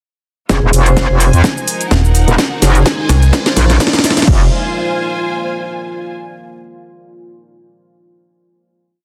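A gritty, bouncy bass house build opens with an aggressive, saturated wobble bass up front, a punchy, overdriven four-on-the-floor kick, and a kit of cracking snare, metallic hats, shaker and crash, both drum parts re-recorded in a large room, while smooth bowed strings join and a short, ringing vibraphone phrase with digital delay sits behind. A deep, moody pad with chorus and sidechain pumping soon fills the background, a chopped, digital FM bass cuts in briefly, and an electronic riser carries the drum-fill build through Fm, Ebm, Ab and Bb. At 4.3 s the build lands on a final Fm chord, and the rich strings ring alone until 6.1 s.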